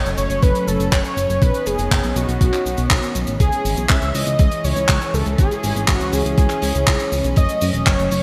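A straight italo disco groove drives this bittersweet, nostalgic excerpt, with a thumpy, sampler-style electronic kick that enters at 0.4 s and carries a tape-warm weight from being re-recorded in a large room. Around it, a tight, mid-forward funk kit of cabasa, handclaps and hi-hat sits in a small-room sound with gated reverb. Underneath, a glossy, mellow synth bass built from pulse and sawtooth waves plucks through its filter and shimmers with chorus. A close, earthy chamber string section bowed with light vibrato holds sustained chords moving from F#m to Badd9 and on to C#m. On top, a thick, bold unison lead of detuned sawtooth and triangle tones sings the melody with vibrato, analog chorus and delay, all set in a bright 1980s-style digital production with a lush hall reverb.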